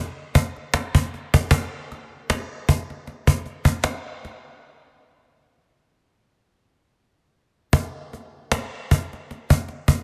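A snappy, up-front acoustic cajon with rattling snares and hard-handed strikes enters at 0.4 s in this smooth, warm R&B fragment at 77 BPM in 4/4 with a light sixteenth-note swing, moving through a break from 4.6 to 7.7 s into a new section, all set in a small-room sound with light reverb and studio ambience under a dense, heavily limited modern master that carries lossy compression artefacts.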